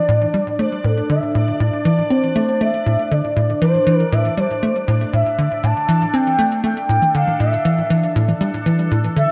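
An expressive synth lead and a bubbling, resonant texture open this short stretch of ambient, sequencer-driven space music, with a tight bass riff joining a moment later. The lead carries the melody in a smooth, sustained sawtooth-and-triangle voice with a soft attack, vibrato, lush chorus and delay, its tone both warm and dark. Beneath it, the detuned texture moves through random filter steps with a long release, chorus and its own built-in reverb. The punchy, up-front bass drives the piece forward with fast-attack sawtooth and square-wave filter plucks, a moving notch, and subtle chorus and delay. At 5.6 seconds, electronic shaker and toms arrive, overdriven and echoed by delay. The mood is expansive and hypnotic, resting on a single minor seventh chord, and the recording sits in a wet plate reverb with a cassette-tape character.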